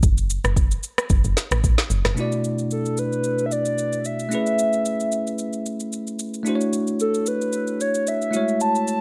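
Deep and late-night in mood, this amapiano piece moves at 112 BPM in 4/4 with a gentle 16th-note swing, set in B dorian. It opens on a drop, where a round, percussive log drum bass with a dark, decaying tone sits up front beside an electronic drum kit of deep kick, woody snare, rim click and shaker, the kit carrying a tape-warm character throughout. At 2.1 seconds a bell-like tine electric piano, bright and clean under a lush chorus, enters to carry the chords from Bm7 through Amaj9 and Dmaj9 to F#m7, and the log drum stops a moment later at 2.2 seconds. At 2.7 seconds a hollow, clarinet-like synth lead takes the melody, its soft, full-bodied tone shaded by vibrato, chorus, phaser and digital delay. Light reverb and digital ambience frame the parts in this short cut from a longer piece.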